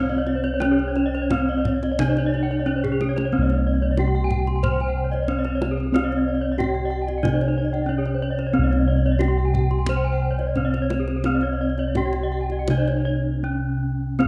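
In a straight 4/4 at 78-92 BPM, this brilliant, ceremonial Balinese gamelan passage in C pelog, cut from a longer piece, rests on round, beating bossed gongs up front in the bass while a close-miked, dry bronze metallophone carries the melody with a bright, full ring. Two more metallophones spin arpeggios with shimmering beats from their paired tuning, one boxy and the other airy. A tight kendang struck with hard hands sits in the background from 0.3 s and plays a fill at 2.8-3.3 s, all set in a moderate recital-hall reverb with a dark, warm production.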